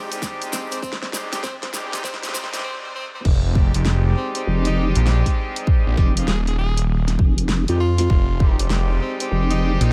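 Glitch hop at 99 BPM in F minor with a swung 16th-note feel, playful and funky, this excerpt opens with a build-up where a brilliant, vintage horn section fires stabs with sidechain pumping and analog delay. Alongside the stabs, a clear tenor saxophone with scooped notes plays a jazzy melody under a filter sweep, while a pop drum kit with a fat snare rolls through a fill, grainy maracas rattle until 2.6 s, and a punchy electronic kick sits up front. After a brief break, the drop hits at 3.3 s with a thick, swirling phased saw bass, and at 4.5 s a nasal, wobbling vowel-sweep bass with chorus and tube saturation joins over an Fm7.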